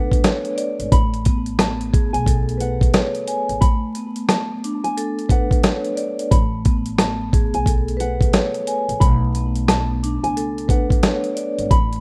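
A rough home-demo mix with vinyl crackle and studio reverb sets a dusty, confident, soulful boom-bap hip-hop groove in swung 4/4, cut from a longer piece and moving between Bm9 and Amaj9. Up front, a gritty, compressed sampler-style drum kit with a thumpy kick, medium-tuned snare, rim click and hi-hat enters at 0.1 s. A ringing, vintage vibraphone with slow motor vibrato and a band-limited cassette-tape tone comps over a woody pizzicato upright bass, while a full-bodied, thumb-plucked nylon-string guitar carries a high, filtered melody.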